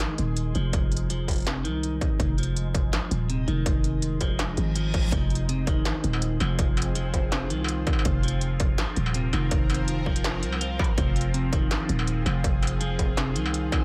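A half-time drum and bass groove in 4/4 with a light swing on the sixteenths sets a tense, heavy mood in this short cut from a longer piece. An industrial drum kit of clanging snare, smooth hi-hats and struck metal runs throughout, joined at 0.7 seconds by a distorted electronic kick that sits prominently in the mix, both with the boxy character of a small room. Underneath, a growling, buzzy 808-style bass hits with a fast attack and decays, kept up front, while a clean, twangy electric guitar picks compressed arpeggios through a tape echo. A reversed, dreamy swelling texture with a granular edge hovers in the background, and a brief reverse cymbal rises at 4.6 seconds. From 6.1 seconds a string-like, detuned drone holds sustained chords with vibrato, phaser, gritty 12-bit sampler colour and sidechain pumping, while the overall sound stays dry and close.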